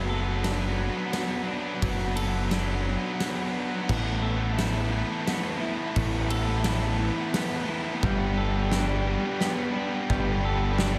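Soaring and hopeful, this post-rock build-up in 3/4 sets a clean electric guitar's tape-echoed arpeggios against a compressed, double-tracked distorted guitar riff and a round, punchy, overdriven picked bass sitting up front, while a huge arena drum kit with a boomy kick, fat snare and bright cymbals joins at 0.4 s, all moving through D6/F#, Asus2 and Gadd9 in a light, small-room ambience.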